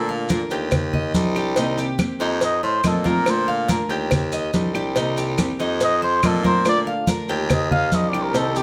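A cup-muted trumpet with a breathy, veiled vibrato and a plate reverb carries the melody of this sunny, danceable Cuban son and guajira piece in Bb major at 142 BPM, over small, old-stringed fingerpicked nylon-string guitar, metallic double-string tres arpeggios and a bright, up-front baritone saxophone playing the bass line, joined from 0.1 seconds by soft-handed congas and from 0.3 seconds by grainy maracas, with a tight, high-tuned cowbell and woody claves in the background, all set in a moderate studio reverb.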